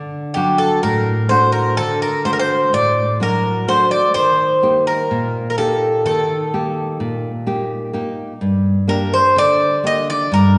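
Greek folk in a straight 9/8, wistful and melancholic, with a bright, metallic bouzouki carrying the melody on picked double strings, some doubled at the octave, over a warm, fingerpicked classical nylon-string guitar accompaniment, both up front in a lush hall reverb as the harmony moves from D to Eb at 4.2 seconds and to Gm at 8.4 seconds in this short section cut from a longer piece.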